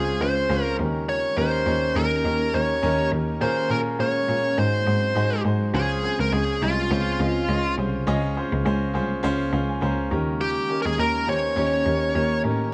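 A lightly swung 103 BPM pop groove in Db lydian carries this glossy, nostalgic excerpt, where a bluesy, overdriven lead guitar picks the up-front melody over a polished baby grand piano that adds a fill at 9.2 seconds, a glassy FM pad with chorus and phaser shimmering ethereally in the background, and a focused bowed cello with vibrato holding the bass line, all in a dark, moderately reverberant mix.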